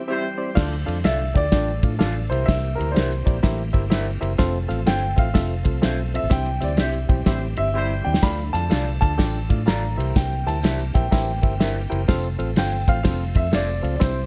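A swung 4/4 groove at 125 BPM drives this uplifting, danceable 1960s-style soul excerpt in C major, where a warm grand piano with audible action noise carries the melody over a barky, reedy electric piano, a quiet bright tonewheel organ on slow rotary holding chords, picked stabs from a slightly broken-up lo-fi guitar, a round foam-muted bass and an up-front soul drum kit with dark cymbals, while a distant horn section with analog delay adds a second line at 0.1 and 7.3 seconds, a drum fill at 7.8 seconds leads in a jingly tambourine at 8.2 seconds, and the whole sits in a small, dark room.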